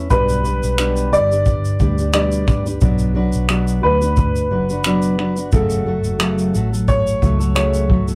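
A clear, slightly detuned upright piano carries the melody in this tender, reflective acoustic pop piece in B minor at 88 BPM with a light 16th-note swing, over a full-bodied, fingerpicked jumbo steel-string guitar, a dark, foam-muted fingered electric bass and an unplugged kit of finger snaps, punchy kick and shaker that joins at 0.1 s, moving through G, Bm and F#m in a rough rehearsal-room recording with a small room's reverb.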